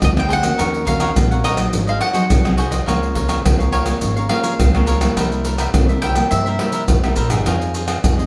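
Bittersweet and yearning, this short cut from a longer samba and choro piece moves at 105 BPM in a straight 4/4, with a bright, double-strung mandolin carrying the melody until 6.8 seconds over a crisp picked cavaquinho, a full-bodied fingerpicked nylon-string guitar, a woody pizzicato upright bass and up-front percussion of maracas, pandeiro, tamborim and a deep surdo, all set in a moderate large-studio reverb as the harmony drifts from Abmaj7 through Db6 and C7 to Fm7.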